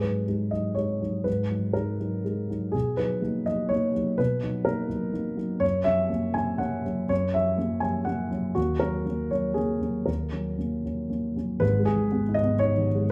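Set in a three-beat metre, the rhythm moves with a free, rubato feel, giving this neoclassical minimalist piano piece an intimate, reflective mood. A solo baby grand carries everything, spanning G#1 to G#5 with a dark, mellow tone, short sustain and audible action noise that keeps the sound natural and close. The instrument sits up front in a moderately reverberant large studio, with the room adding a gentle tail. The harmony drifts from G#m7 through Bmaj7, F#7 and D#m7, then shifts to a new passage at 11.6 seconds that settles on G#m. The instrument is tuned slightly above standard pitch, and this short cut from a longer work ends at 13.1 seconds.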